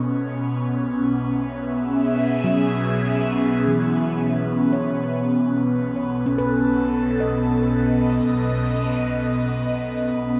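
In a straight 3/4 feel, this luminous ambient excerpt is led by an airy, breathy pad up front, whose soft, detuned triangle and sawtooth layers with a noise layer, slow attack and long release pass through chorus and phaser as it holds sustained chords moving from C#m/B to B7 at 5.2 seconds, while a ringing, meditative stainless-steel handpan plays arpeggios with sharp finger strokes through tape echo in the background, and a dark, intimate bowed double bass section, played sul tasto with light vibrato, plays a low B beneath, the echo-heavy mix set in a wet plate reverb.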